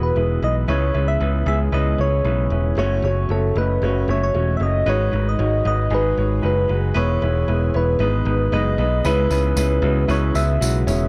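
Piano-driven pop in C# minor at 115 BPM, this short clip from a longer piece carries a bittersweet, dramatic mood in a straight 4/4. A clear concert grand piano sits up front with deep bass and long sustain, moving through E, C#m7, F#m and G#m7 before landing back on C#m7 at 9.1 seconds. Above it, a soft, round synth lead with a keys-like, fast-attack tone and chorus carries the melody between A4 and E5, while a very quiet, breathy pad with a slow attack and long release holds sustained chords underneath. A bright, picked electric bass is the most prominent part in the mix, sounding direct and up front in its low register. A jingly tambourine joins only from 9.0 to 11.0 seconds as the music shifts into a new section, and the whole recording has a dry, close studio sound in a 1970s style with very little reverb.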